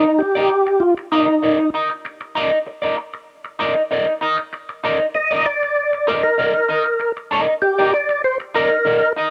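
Set in a straight 4/4 groove, this short funk fragment, cut from a longer piece, has a sly, funky mood and a dry, close sound in the manner of a 1970s studio, with little reverb. A percussive tonewheel organ carries the melody from the start, fat and lightly overdriven, with key click, second-harmonic percussion, chorus vibrato and a slow rotary speaker giving it a lively shimmer. Beside it, an electric guitar at the edge of break-up plays accompaniment through a wah, its picked tone twangy and slightly broken-up. Both parts sit up front and share the same register, the organ a touch louder than the guitar. The whole passage rests on a single Ebmaj7 chord, and the organ stops at 9.1 seconds while the guitar carries on to 9.3 seconds.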